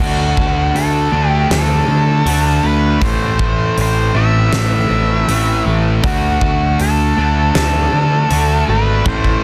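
A growling, overdriven electric bass sits up front in this angsty, brooding slice of quiet-loud alternative rock at 80 BPM. Alongside it from the start play a double-tracked fuzz guitar riff and a dark octave-fuzz lead melody with tape echo. Beneath them, a very quiet, twangy twelve-string electric guitar plays clean arpeggios, and a huge arena drum kit with a fat snare and punchy kick fills a big room before a drum fill at 9.1 seconds, all set in light reverb and a dense, heavily limited master as the chords move from D to Am and back to D.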